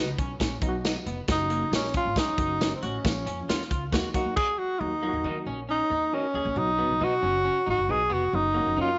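Uptempo 1960s-style soul at 136 BPM in Eb minor, driving and passionate, with a barky, lightly overdriven electric piano shimmering with fast tremolo and dark, clean guitar stabs with chorus and slapback echo in the background, a slightly broken-up, picked guitar riff from a small old amp, a woody, growly upright bass, a punchy, up-front acoustic drum kit that plays until 4.5 seconds, a jingly, distant tambourine, and a breathy tenor saxophone with scooped notes and vibrato leading up front from 1.3 seconds, set in light reverb and studio ambience in this cut from a longer piece.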